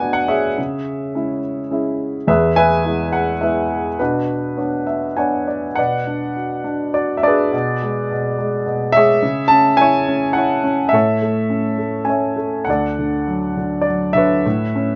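A woody upright piano plays alone and up front with long sustain in this bittersweet, cool fragment of a lyrical classical solo piece in a rubato three-beat lilt, slipping in a brief fill at 4.6 s before moving into a new section at 5.8 s, all captured by close, detailed microphones with light reverb.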